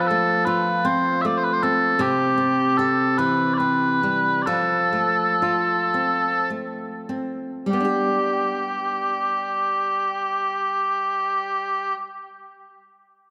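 Celtic folk slow air in 6/8 with a free, rubato feel: this pastoral, wistful excerpt places mellow, sweet small bagpipes up front, carrying a continuous melody with vibrato, over up-front fingerpicked acoustic flamenco guitar moving through F, C and G, slowing between 2.0 and 7.7 seconds before a second section, and it is set in a wet church reverb.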